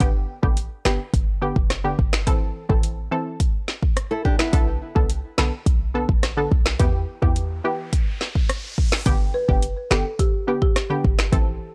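A dry, gritty cassette-tape sound frames this tough, bouncy dancehall groove at 106 BPM in 4/4, cycling through G, Am, Bm7 and Em. Up front, an electronic afro-pop kit with deep kick, woody snare, metallic hats, rim clicks and finger snaps drives alongside bright, detuned sawtooth chord stabs treated with chorus, while a tight, sine-based 808-style bass sits in the background. A fingerpicked nylon-string guitar appears briefly at 4.1 seconds with tape echo, an electronic riser enters at 7.4 seconds, and a rustic, close-miked folk marimba carries the melody from 9.3 seconds, also touched with tape echo.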